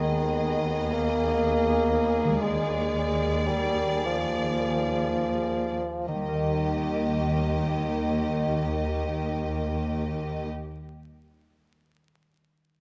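A moderate scoring stage reverb and a vinyl crackle surround this serene, lyrical excerpt from a slow romantic orchestral movement in 6/8 and E-flat major, which moves with rubato at roughly 27-41 BPM and slows through its first 6.1 seconds. A lush, focused violin section carries the melody over a soft-edged second violin line, while an even viola section sits in the background and an up-front, smooth cello section holds the bass on a low E-flat. A warm solo bassoon with gentle vibrato adds to the accompaniment, and a ringing, fingerpicked concert harp spreads arpeggios underneath, sounding on alone after the strings and bassoon stop at 10.5 seconds until 11.2 seconds.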